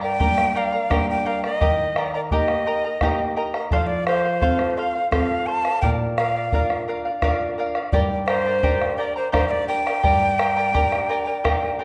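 A breathy, cane-toned quena carries a melancholic, earthy melody over a shimmering, bright charango, a small fingerpicked nylon-string guitar with audible finger squeak, and a round bombo entering at 0.2 s in this 3/4 Andean folk piece in G minor at 85 BPM, set in a wet recital hall reverb and cut from a longer work.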